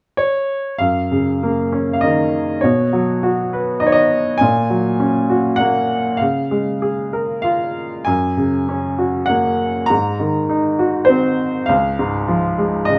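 A clear, woody upright piano sits up front and plays alone from 0.2 to 13.0 seconds in this sunny, hopeful classical piece for lyrical solo piano, moving in a rubato 3/4 at about 100 BPM in F# major, tuned to A4 = 435 Hz and ranging from C#2 to A#5. The harmony travels through F#6, Badd9, F#/A#, C#6, F#add9 and G#7 before settling on C#. Close, detailed microphones and light reverb frame this brief passage, which is cut from a longer piece.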